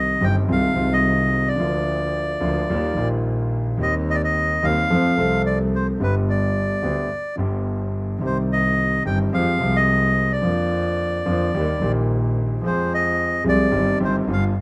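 A tango in C minor opens at once with bandoneon, piano and double bass together, setting a passionate, melancholic mood at 109 BPM in 4/4 with a rubato feel. The reedy, bright bandoneon carries the melody up front with a mid-forward tone, moving between B4 and G5. Beneath it, a concert grand piano plays the accompaniment with an intimate, vintage character, its deep bass and audible action noise close at hand. A single bowed double bass holds the low line with a clear, intense tone, light vibrato and a smooth top. The harmony moves through Fm7/C, Bb/D and Ebadd9 before reaching F and G, then returns to Cm and closes on Cm/G near 13.7 seconds. Light reverb surrounds the trio in this short cut from a longer piece.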